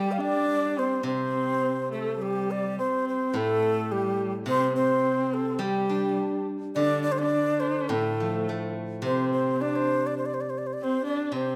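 Chinese traditional chamber music, pastoral and festive, moves at 105 BPM in a rubato 2/4 in the C zhi mode: an airy bamboo xiao carries the melody with vibrato and a crisp attack, a husky, bowed horsehead fiddle adds a focused second line with portamento, and a silvery, fingerpicked steel-string zither rings beneath, all three up front in a moderate stage reverb across this short excerpt.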